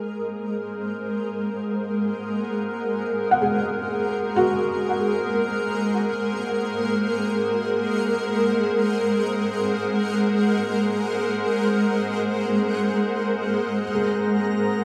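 Drenched in wet spring reverb and heavy echo, this peaceful ambient fragment opens on a cloudy, granular pad sustaining an Ab7 chord up front, joined at 3.3 seconds by mellow arpeggios from a felt-muted upright piano through analog delay, before a barely audible, clear flugelhorn melody with light vibrato arrives at 13.8 seconds, followed at 14.1 seconds by a faint, glassy harmonics texture with chorus.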